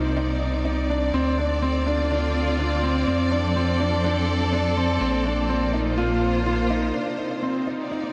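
Piano and strings electronica with a moving, cinematic mood, built on a clear grand piano riff with audible action noise and a diffuse ambient delay, bowed studio strings holding sustained chords with vibrato, and a round, deep analog bass that stops at 6.9 s before a very quiet, warbling lo-fi pluck adds arpeggios from 7.1 s, the dreamy mix soaked in huge reverb in this short excerpt cut from a longer piece.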